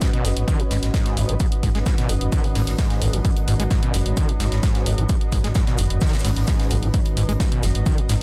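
A screaming, squelchy acid line cuts through this brief cut from a driving peak-time techno track, its resonant sawtooth tone distorted and bright, thickened with chorus and digital delay, pumping against the kick as a filter sweep runs through it. Beneath it, a punchy analog kick sits up front with an electronic hi-hat in a straight, relentless groove, while a growling FM bass arrives at 0.2 seconds, thick and sustained, also pumping with the sidechain. A huge arena drum kit lurks in the background, adding a fat snare, hi-hat and shaker trimmed by high-pass filtering. At 1.5 seconds an eerie, nasal, metallic drone fades in behind everything, inharmonic and soaked in chorus and reverb. A mellow granular cloud pad, blurred and detuned, drifts higher up with slow evolving sustain, and a small room ambience wraps the drums, keeping the whole passage hypnotic and insistent on a single minor chord.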